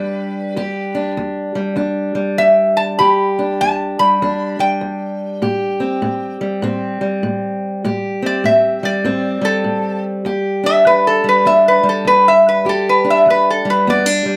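A metal-body resonator slide guitar and a fingerpicked steel-string acoustic guitar begin together in this smoky, brooding acoustic country blues with a loose swing. The resonator carries the melody up front, its slide tone bright, metallic and nasal, played with fingerpicks. Beneath it, the parlour-style acoustic guitar supplies the accompaniment, also close and present, with a dark, woody, boxy sound from old strings. The harmony settles on Em7, moves to Am7 at 5.4 seconds and returns to Em7 at 10.3 seconds. A light reverb gives the pair a little air, and this brief excerpt is cut from a longer piece.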